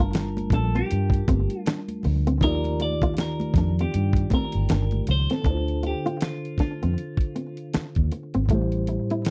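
Sultry and smooth, this slow R&B and neo-soul excerpt at 79 BPM with a swung sixteenth feel sets a bright, twangy clean electric guitar melody with phaser over a fingerpicked flamenco guitar line with slapback echo, mellow tine electric piano chords moving from Gm9 through Ebmaj9 and Dm7 to Am7, a dark, round, foam-muted vintage electric bass and a gritty, compressed sampler-style soul drum kit with a thumpy kick and fat snare up front, while high-tuned congas sit in the background until 5.3 seconds, all in a dry, close 1970s-style studio sound.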